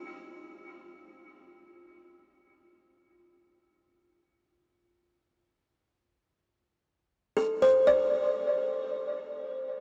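Warm and peaceful, this free-time ambient excerpt features a solo buzzing kalimba with a woody, hollow-box tone and a vintage, band-limited character, plucked with the thumbnail in short notes between F4 and D5 that sit up front from 0.0 to 1.0 seconds and again from 7.4 to 9.0 seconds, carried by a diffuse ambient delay into a huge, wet reverb with a 7.1-second decay.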